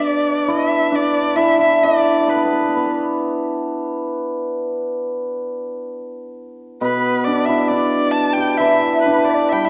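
Loosely measured at 66 BPM in 2/4 and played rubato, this short cut from a longer Chinese traditional chamber piece moves with a pastoral, graceful ease. A clear, bowed erhu sits up front with the melody, singing smoothly with vibrato and portamento; it pauses at 3.0 seconds and returns at 6.8 seconds. Beneath it, one hammered dulcimer carries a shimmering second line for the whole passage, also up front, while a second dulcimer rings out a lower accompaniment that drops away at 4.1 seconds before coming back with the erhu. Near the close, at 9.1 seconds, a large bamboo dizi slips into the background with a pure, buzzing-membrane tone, tongued notes, vibrato and softened highs. A moderate scoring-stage reverb gives the ensemble a roomy glow, and the production leans dark and warm.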